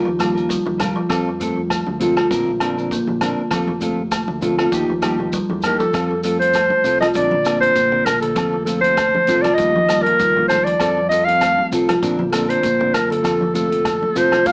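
A lightly swung 4/4 groove at 99 BPM sets a carefree, joyful highlife mood in F mixolydian, with a woody, tape-echoed kalimba arpeggiating over a dark, clean electric guitar and a round fingered bass, while a vintage drum kit with a punchy kick sits in the background alongside ringing agogo bells, a grainy shekere and soft-handed congas that join by 0.7 seconds. At 5.6 seconds a mellow clarinet takes up the melody, delivering an up-front jazz-style solo with vibrato and a soft attack, as the chords cycle through Ebadd9, F and Bbadd9. Light reverb and a small-speaker quality give this cut from a longer piece a homely, vintage character.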